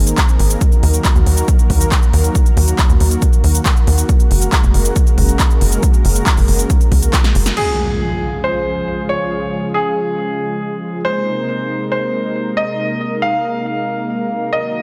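Emotional and soaring, this uplifting trance excerpt opens on a lush, detuned unison pad with chorus and sidechain pumping, under a tight, nasal sawtooth sequencer bass, a punchy, tape-warm analog kick and a layered dance kit of crisp hats, punchy snare, handclaps, shaker and crash. After a drum fill and band accent, the rhythm section drops away around 7.6 seconds as an electronic impact hits and a clear, polished grand piano steps up front with delay over the sustaining pad. Light reverb gives the mix a sense of space.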